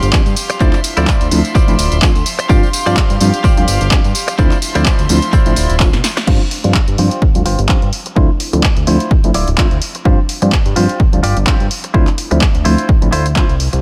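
A groovy, sensual slice of filtered disco house opens straight into a drop. Bright, bowed chamber strings hold sustained chords over a twangy, clean, direct-recorded guitar riff, a fat sawtooth analog bass with tube saturation, and a punchy, tape-toned analog drum machine of snare, handclaps, hi-hat, tambourine and crash, joined by an up-front electronic kick and a worn, slightly out-of-tune tine electric piano through a phaser. Strings, guitar, bass and piano each pump with sidechain and sit behind a low-pass filter as the harmony moves between G7sus4 and Dm9 over a lightly swung sixteenth feel in light digital reverb, until a drum fill and band accent end the drop at 6.3 seconds, where the strings drop out and a filter sweep carries the rest.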